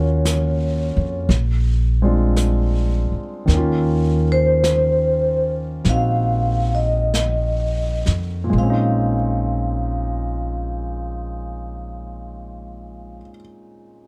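Vibraphone, grand piano and upright bass open this smoky, intimate jazz ballad together in 4/4 with a gentle swing, around 41 to 59 BPM and slowing down through the first 8.5 seconds as it settles into Bb minor. A brushed kit enters at 0.3 seconds and keeps to the background with a dark, smooth snare and hi-hat, while the woody, growly pizzicato bass sits up front under the piano's deep, long-sustaining chords with audible action noise. The metallic, ringing vibraphone carries the melody high above, shimmering with fast motor vibrato and plate reverb, before the piano rings on alone to the close of this excerpt at 14.1 seconds.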